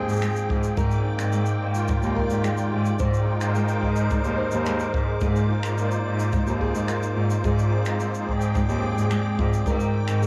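Hopeful and pastoral, this folktronica excerpt moves at 108 BPM in a straight 4/4, cut from a longer piece and captured as a home recording on cassette with little reverb. A fingerpicked nylon-string guitar plays classical-style arpeggios through a low-pass filter and analog delay, while a musette accordion holds sustained chords with a shimmering, wet-tuned, vintage character. Up front, a single bowed cello carries the bass line with a nasal, gut-string tone and light vibrato. In the background, a reversed, granular texture drifts high and bright, detuned and dreamy, with a soft attack and long release. Cabasa and finger snaps played with brushes sit low in the mix, joined at 0.5 seconds by a boomy acoustic kick drum. The harmony rests on Ebadd9 over an Ab bass, moving to Bbsus4/Ab at 5.2 seconds before returning.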